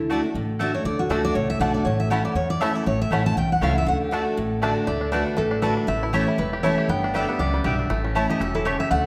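A dark, full-bodied jumbo steel-string guitar carries the picked melody up front in this driving, rustic bluegrass clip, played at a brisk 238 BPM in D major with a light swing on the eighth notes. A second picked steel-string guitar, a bright dreadnought also placed up front, supplies the accompaniment, while a woody, thumpy upright bass with gut strings plucks the low end. A mandolin with double strings adds picked stabs throughout, and a twangy, percussive banjo played with fingerpicks joins at 1.1 seconds with arpeggios. For a brief moment around 4.0 seconds, a single dark fiddle, bowed with light vibrato and portamento, slips in from the background with a second line. The harmony moves among D, A and G, and a wet recital hall reverb gives the small acoustic group a spacious, resonant setting.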